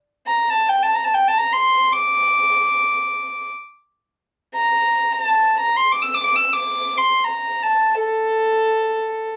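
A moderate studio reverb gives this short passage, cut from a longer piece, a soft sense of space around a single bowed violin placed up front. Playing solo in free time from 0.3 to 9.3 seconds, the violin carries a longing, melancholic line in A maqam kurd, tuned to A4 = 441 Hz, between A4 and E6. Its tone is rich and pure, with a soft attack and a floating, sul tasto quality that feels faintly distant.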